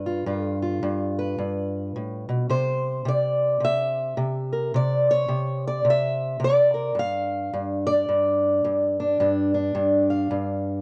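A fingerpicked, ladder-braced acoustic guitar sits up front, its old strings giving a dark, woody and boxy tone that carries this acoustic country blues on its own. The feel is swaggering and rollicking, moving at 108 BPM in a swung 4/4 and set in G mixolydian, tuned slightly under standard pitch at A4 = 439 Hz. Across its range from G2 to F5, the guitar moves from a G7 at the start to C at 2.5 seconds and settles on a bare G5 at 7.0 seconds. The sound is a dry, close 1970s-style studio recording with a light touch of reverb. This brief 10.8-second passage is cut from a longer piece and plays as a single section.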